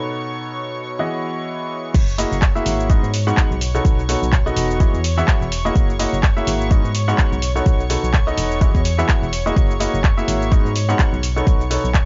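Swung sixteenths in four drive this feel-good, uplifting piano house clip, which opens on a clear, woody upright piano riff with long sustain and delay, set over soft, distant, floating bowed strings that pump with the sidechain. At 1.9 s the drop arrives: a punchy, layered electronic kick sits up front, a house kit adds crash, handclaps, shaker and bright hats, and a round, dark FM bass with tube saturation pumps beneath the chords. The mix is dry and gritty, with a cassette-tape dullness at the top.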